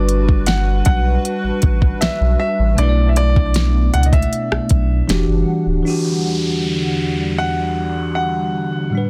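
A slow, straight 4/4 pulse at 78 BPM anchors this sensual, moody contemporary R&B fragment in E minor, cut from a longer piece. A smooth electronic drum kit sits up front with a soft kick, fat snare, rim click and silky hi-hats, playing from 0.1 until 5.3 seconds, while a deep, sine-like sub bass with an added octave holds sustained, mellow low notes until 5.8 seconds. Over a progression of Gmaj7, Bm11 and Em9, a bell-like tine electric piano supplies bright, clean accompaniment, and a hollow, flute-like pad with ensemble chorus breathes in slowly with long, soft sustains. An intimate concert grand carries the melody high in its range, its audible action noise adding a natural closeness, with a digital delay trailing its notes. As the rhythm section drops away, an electronic downlifter enters at 5.9 seconds, leaving the keys and pad to float in a dry, dense and heavily limited modern mix.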